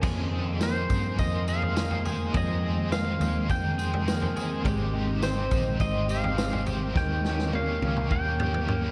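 A straight 4/4 pulse at 104 BPM carries this ethereal, blissful dream pop fragment, where gritty garage drums with a punchy kick and a round, foam-muted bass sit under a detuned granular cloud pad, twangy edge-of-break-up guitar arpeggios with lush chorus and tape echo, and a bright, double-tracked overdriven guitar with tremolo and analog chorus, while a clean pedal steel melody enters at 0.6 seconds through tape echo over Fm11, Abmaj7 and Eb7 chords in a dark plate-reverb mix that ends on a drum fill from 7.0 seconds.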